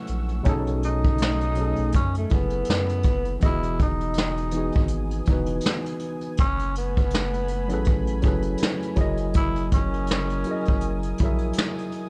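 A worn, slightly out-of-tune tine electric piano opens this hazy, melancholic lo-fi hip hop excerpt, lightly overdriven with cassette-tape coloring and sitting up front, while a dark, detuned analog pad with chorus holds sustained chords in the background. Brush drums arrive at 0.1 seconds, acoustic and roomy with a punchy kick, medium-tuned snare and hi-hat, their rolled-off top roughened by vintage 12-bit sampler grit, alongside a deep, thick, saturated sub bass. From 0.8 seconds a growling tenor saxophone carries the solo melody in jazz style, breathy and raspy with subtone, vibrato and scooped notes, trailed by analog delay. The harmony moves through B13 and F#m11 to Emaj7 at 3.4 seconds, then returns to F#m11 and closes on F#13. A swung sixteenth-note feel and a small room reverb round out the piece.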